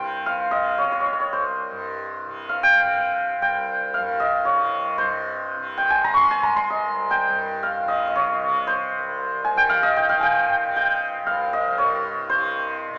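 Hindustani classical music in C raga bhairavi, cut from a longer piece, moves at 115 BPM in a straight 7/4 with a solemn, introspective mood: an up-front hammered santur carries the ringing melody over a mellow, buzzing tanpura drone, both shimmering from 0.0 s with a shift into a new section at 5.0 s, all heard as a live performance in a stone room with reverb and a small-speaker sound, tuned to A4 = 441 Hz.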